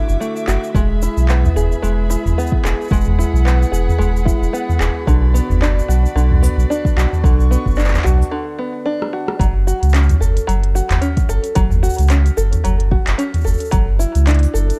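A dark, dry, warm-toned production frames this wistful, autumnal folktronica piece, cut from a longer work, in F# minor at 111 BPM with a light 16th-note swing. A twangy, plunky fingerpicked open-back banjo plays arpeggios through digital delay over a round, mellow sine sub bass sitting up front, while a soft, tape-tinged electronic kick joins an organic electronic kit of crisp hats, cabasa, handclaps, rim click and toms. A distant bowed string quartet holds smooth vibrato chords until 8.3 s, giving way to a short break and a drum fill at 9.0 s before the section repeats.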